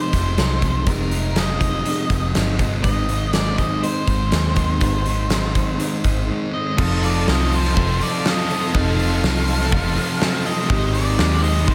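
A big, up-front rock drum kit drives this dreamy, brooding shoegaze and dream pop excerpt at 122 BPM in a straight 4/4, its punchy kick, fat snare, hi-hat and bright crash cymbals ringing in a stone room. Beneath it, a foam-muted vintage bass sits dark and round, entering at 0.1 seconds alongside the kit. A thick fuzz guitar grinds out a low riff in the background with subtle chorus, while a lo-fi, slightly broken-up guitar through a small old amp plays its own compressed riff washed in reverse reverb. Over the top, an octave-fuzz lead carries a shadowy melody trailed by analog delay, moving over Fm7 and Ab chords. At 6.8 seconds the harmony shifts to F7 and Abmaj7 as a double-tracked, overdriven guitar adds a brighter riff and a very quiet string machine spreads lush, sawtooth-edged sustained chords with a soft attack and ensemble chorus, all held in light studio reverb.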